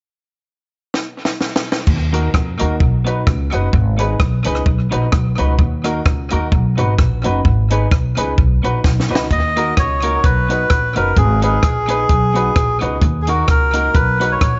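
This mischievous, driving ska excerpt opens with a compact cocktail drum kit, dry and up front with a high-tuned snare, tight kick and dark cymbals, playing a fill with a touch of tape echo at 0.9 seconds. At 1.9 seconds a woody, pizzicato upright bass arrives in a low register, and the clean electric guitar and clear upright piano join moments later, cycling through a minor-key progression with a lightly swung feel. The guitar sits further back, twangy and scooped, its compressed tone marked by a warbly pitch drift, while the piano adds open, woody stabs in the same middle range. After a second drum fill, a reedy, breathy melodica takes the melody at 9.3 seconds, nasal and boxy with its own tape echo, sitting up front over the band. Light studio reverb and a darkened top end give the whole mix a snug, vintage character.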